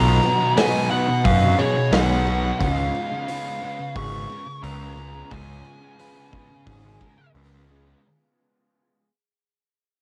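A distorted, compressed fuzz lead guitar sits up front carrying the melody from the very start, its tone smeared by analog delay as it ranges between C#5 and C#6 before dropping out at 7.3 seconds. This short, dreamy and hazy cut of shoegaze and dream pop rock moves at a straight 88 BPM in 4/4, fading out across its full length over a Bmaj7 that shifts to C#7 at 2.6 seconds. Underneath, a dark, thick fuzz guitar riff thickened by ensemble chorus sits alongside a background overdriven electric guitar riff washed in reverse reverb, while a shimmering, octave-doubled twelve-string acoustic guitar picks arpeggios through lush chorus and delay. A fuzz picked electric bass, overdriven and prominent, anchors the low end, and a big rock drum kit with a punchy kick, medium-tuned snare and hi-hat comes in at 0.6 seconds. Cassette tape grain colors several parts, and the whole sits in a modest booth ambience that gives it a homespun, saturated haze.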